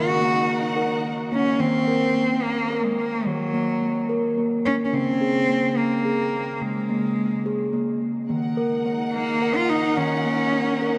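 A rich, bowed cello carries the melody up front, its soft attack, vibrato and expressive portamento giving this hypnotic, gentle world meditative piece a singing, human voice. Alongside it, a steel tongue drum struck with firm rubber mallets plays ringing arpeggios throughout, its round, pure tone touched by tape echo and a boxy small-room character. A lush, ensemble string section holds sustained chords at the start, drops out at 1.6 seconds, and returns at 8.3 seconds with a smooth top and warm vibrato. Moving in a slow, straight 6/8 at 72 BPM in Eb dorian, the harmony rests on Ebm, shifts to Db5 at 4.9 seconds, and settles back on Ebm. A cathedral reverb with a long 5.9-second tail places the music in a vast, echoing space, and the excerpt is cut from a longer piece.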